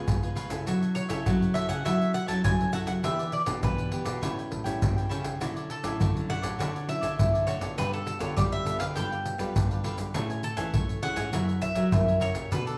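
A straight 4/4 groove drives this joyful, lively samba and choro excerpt, with egg shaker, deep surdo and pandeiro entering at 0.1 s and sitting up front, their hard-handed sound vintage and band-limited. A picked mandolin carries the melody, its double strings giving a round, warm tone. Beneath it, a crisp picked cavaquinho and a fingerpicked, deep classical nylon-string guitar with audible finger squeak fill in the accompaniment, while a second nylon-string guitar supplies a warm, fingerpicked classical bass line. The harmony moves through rich seventh and ninth chords, from C#7 and F#m7 through Dmaj9 and G9 to Amaj7 and F#7. The whole band plays live together in one room, wrapped in a wet, large studio reverb that gives the acoustic ensemble a full, lively presence.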